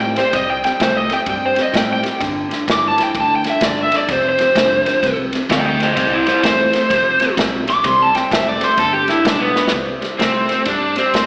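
A swung shuffle at 128 BPM in 4/4 drives this swaggering, soulful electric blues, a fragment cut from a longer piece in C major. Out front, a lead guitar through a small cranked amp plays a dark, overdriven solo with slapback echo until 9.7 seconds, ranging from B3 up to D6. Beneath it, a second electric guitar through a small old amp picks a low riff with a slightly broken-up, lo-fi, compressed tone, colored by spring reverb and slapback echo. An upright bass plucks a woody line on steel strings, sitting quietly in the mix. The drum kit comes in at 0.2 seconds with an airy, polished studio sound, a punchy kick, a medium-tuned snare and ride cymbal, and it plays a fill at 9.5 seconds as the harmony moves through C, G and F. The whole performance comes across like a live gig heard through the venue's PA, with recital hall reverb, moderate plate reverb and an AM radio tone.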